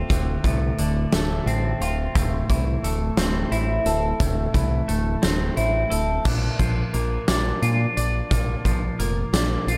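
A twelve-string electric guitar opens this melancholic, cathartic post-rock excerpt, picking bright, twangy arpeggios over a Dm7 chord, its clean tone compressed and bathed in spring reverb and analog delay. At 0.1 seconds a growling fingered electric bass and a huge arena drum kit join, moving at a slow 58 beats per minute in a straight 6/8. The bass is overdriven and punchy, fed through both a direct and amped signal, while the drums sound natural and acoustic in a big room, with a fat snare, punchy kick, hi-hat and crash cymbal. The harmony shifts to Am/D before the music moves to a new passage at 6.3 seconds on a Bb chord, carrying its weight through to the end. All three parts sit up front in the mix, with light reverb and a small room ambience framing the sound.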